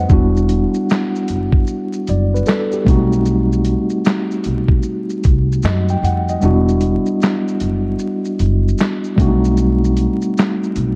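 Dark, dry production with vinyl crackle frames this melancholic, hazy lo-fi hip hop cut at 76 BPM with a swung sixteenth feel in E minor, where a mellow tine electric piano, softened by cassette tape and a low-pass filter, alternates Em9 and B7b9b13 over a woody pizzicato upright bass and a gritty, compressed sampler-style kit of thumpy kick, medium-tuned snare, hi-hat, shaker and handclaps, with the kick muted from 6.4 to 8.0 seconds.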